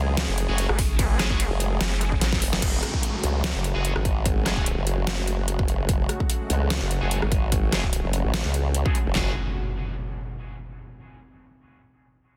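A formant-sweep wobble bass dominates this chaotic, heavy dubstep passage, its sawtooth-and-sine tone compressed, chorused and overdriven up front from the very start, joined briefly between 0.7 and 2.4 seconds by a nasal, resonant vowel-sweep wobble bass. Two layered electronic drum kits drive the half-time, lightly swung groove: one, sitting up front with metallic hats, brings kick, handclaps and a deep snare, while the other, with its punchy kick character, adds crash, ride, hi-hat, rim clicks and its own deep snare, both overdriven and re-recorded in a small room. A bright, double-tracked distorted electric guitar cuts in with picked stabs, softened by a low-pass filter and trailed by dub echo. Behind it all, a lush, thick, warbling vintage unison pad holds detuned sawtooth chords under sidechain pumping and chorus. The section opens on a drop that ends with a drum fill, a downlifter and impact arrives at 2.6 seconds, and another sweeps in at 9.2 seconds as this cut from a longer piece closes, all framed by light reverb and a dense, heavily limited modern master.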